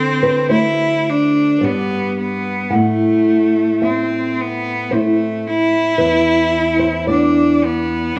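Romantic duo for cello and classical guitar at a slow, rubato 55 BPM in 3/4, warm and serene, where a single clear, focused bowed cello with vibrato sings the melody up front while a dark, small-sounding nylon-string guitar with fresh strings, thumb-plucked and also up front, accompanies through D7, G, Am and E5 for all 8.2 seconds of this short cut from a longer piece, set in a moderate recital hall reverb with small room ambience.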